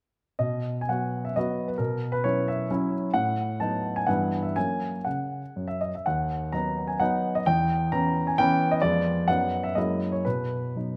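Close, detailed microphones catch an intimate grand piano with audible action noise, set up front in a moderate recital-hall reverb. This short cut from a longer classical piece is a graceful, proud romantic dance in 3/4 and B major, with dotted rhythms and a rubato feel moving between 110 and 144 BPM. The solo piano plays from 0.4 to 11.0 seconds across D#2 to A#5, its harmony passing through B7, E minor, half-diminished and diminished colours and an F#13 before coming home to B.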